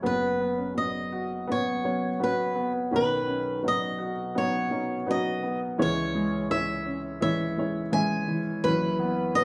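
Hopeful and nostalgic, this short excerpt from an acoustic folk-pop ballad moves at 84 BPM in a straight 4/4, with a picked acoustic guitar carrying the melody up front in a boxy, swing-style voice complete with finger squeak. Beneath it, a worn baby grand piano plays accompaniment while a felt-muted upright piano, soft, mellow and vintage in tone, spins intimate arpeggios close to the listener. The three play together as a live band in a large studio room with moderate reverb, moving through F#sus4, Badd9 and C#m before settling on F#7sus4.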